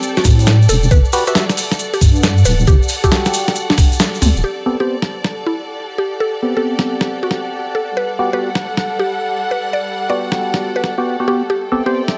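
UK garage in a two-step vein, soulful and bouncy, with a strong swing on the sixteenths, cut from a longer piece. Hollow, percussive organ stabs treated with chorus and phaser sit up front throughout, beside a gritty, pitched-down sampler-style kit of hi-hat and medium-tuned snare, while grainy maracas shake through the opening 4.4 seconds. A deep, dark wobble bass and a thumpy electronic kick drive that first stretch, the kick dropping out at 4.0 seconds on a band accent just before the bass stops at 4.4 seconds. A woody, round mallet-like synth pluck carries the melody with chorus and delay, and a rich, bowed symphonic string section breathes underneath with sidechain pumping. From 4.4 seconds a filter sweep runs across the organ stabs, and at 5.4 seconds a smooth, full-bodied analog pad fades in with slow-attack sustained chords, also pumping, as the harmony moves between A minor ninth and G major seventh colours in a light digital ambience.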